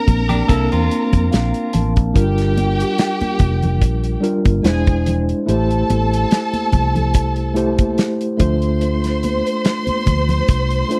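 Soft-attack bowed violins, distant and rich with vibrato, and a mellow, clean tine electric piano heard through its built-in speakers open this bittersweet, cinematic slice of 1970s-style soul at 72 BPM in 4/4 with a light 16th-note swing, joined at once by a dark, round, foam-muted fingered bass, an up-front soul drum kit with tight kick, medium-tuned snare and hi-hat, and very quiet high-tuned congas, while a compressed, picked clean electric guitar plays a brief riff with harmonic tremolo until 1.9 s and the electric piano adds a fill from 0.9 s, before the harmony moves from Bbmaj9 to Gm7 at 2.2 s in a dry, close studio sound.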